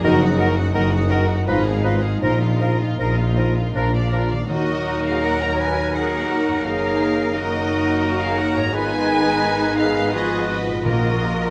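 A yearning, solemn, slow romantic orchestral movement in rubato triple time opens with a warm violin section melody, expressive with portamento, over a focused second violin section, an airy flute section, a very quiet clarinet, a smooth-topped oboe, dark woody violas, a mellow bassoon, distant French horn chords, ringing thumb-plucked harp arpeggios, a tuba that stops at 4.4 s, rich double basses and lush cellos, with close, dry, hard-mallet timpani striking at 4.5 and 10.9 s, the orchestra set in a wet recital hall reverb and cut from a longer piece.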